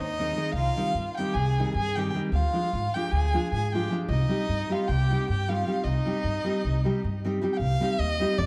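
Set in a straight 9/8 metre, this short cut from a longer Balkan wedding-band folk piece moves with a restless, virtuosic drive. Up front, a solo bowed violin carries the melody high in its range with vibrato, portamento and an expressive, shadowy tone. Beneath it, a more distant fiddle adds a woody, lightly vibratoed second line and drops out at 7.3 seconds. A pizzicato upright bass on gut strings sits close and thumpy at the bottom. A fingerpicked nylon-string guitar, entering at 0.2 seconds, supplies deep classical accompaniment through a minor-key progression that passes through a diminished chord before settling back. The dark, warm production places the ensemble in a moderate scoring-stage reverb.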